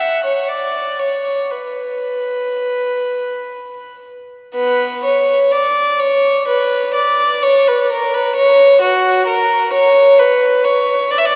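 Bathed in a wet church reverb with a 3.5-second decay, this flowing, grave excerpt from a baroque-style suite movement for unaccompanied violin moves in a rubato 3/4 at 57-66 BPM in B minor, its single close, up-front period-style player drawing a nasal, gut-string tone with an airy bow across 11.4 seconds.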